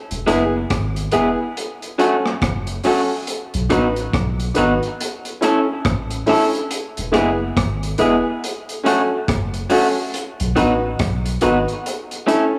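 A swung, unhurried 4/4 roots reggae groove of crunchy breakbeat drums with a punchy kick, hi-hat and rim click carries a round, deep dub sub bass, a slightly broken-up electric guitar with tape echo and clear, woody upright piano stabs through an uplifting cycle of E, F#m, B and A chords, all set in a moderate echo-chamber reverb within this short section cut from a longer piece.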